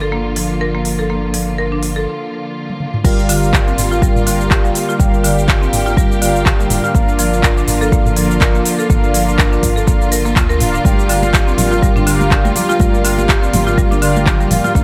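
A woody, buzzing marimba arpeggiates through an opening filter sweep over lush, bowed string chords with a gritty vintage-sampler edge, while mellow, detuned synth-brass stabs with chorus and a round sine sub bass pump under sidechain in this hypnotic afro house cut at 123 BPM in G minor, with swung 16ths. The afro-pop kit's crisp hats, claps, shaker, toms and crash arrive almost at once, and after a short break and drum fill a deep, tape-warm electronic kick drops in at 3.0 seconds as the harmony alternates between Bb/G and Gm7. Bright, high-tuned congas slip into the background at 10.8 seconds, all under a light reverb.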